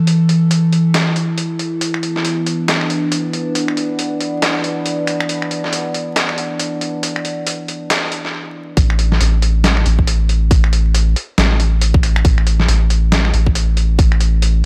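A resonant, ring-modulated drone of sawtooth and sine tones with moving overtones opens this cavernous, heavy deep dubstep excerpt at 138 BPM, half-time with a 16th-note swing, holding a chorused, reverberant A5 chord over muffled, pitched-down sampler-style finger snaps, hi-hat and a tape-warm snare thinned by high-pass filtering; the drone drops away at 8.3 seconds, and the drop lands at 8.8 seconds with a tight, layered electronic kick and a round, soft dub sub bass on A1 up front, with light reverb and vinyl crackle throughout.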